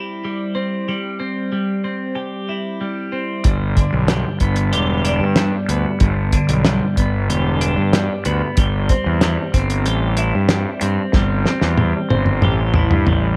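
A light reverb and small-room ambience frame this hazy, trippy psychedelic rock clip, which opens with a bright, twangy twelve-string electric guitar riff through a phaser, moving between C/G and G. At 3.4 seconds a cloth-damped drum kit enters with a dry, dark, thuddy sound, a fat snare and tight kick, joined almost at once by a growly, fuzz-overdriven fingered electric bass. A drum fill arrives at 11.1 seconds, with guitar, drums and bass all sitting up front in the mix.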